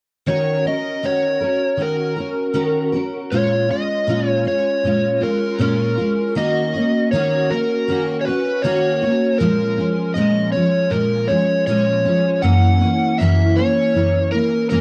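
Wistful and lonely, this dark, warmly produced indie pop excerpt with a gentle swing pairs an up-front overdriven slide guitar, played with fingerpicks and colored by analog chorus, carrying the melody over a full-bodied jumbo steel-string acoustic guitar whose picked accompaniment, finger squeak, ensemble chorus and warbly pitch drift sit in a small, reverberant room as the chords move from Ebm7 and Bbm7 toward a closing Gb7 at 12.4 seconds.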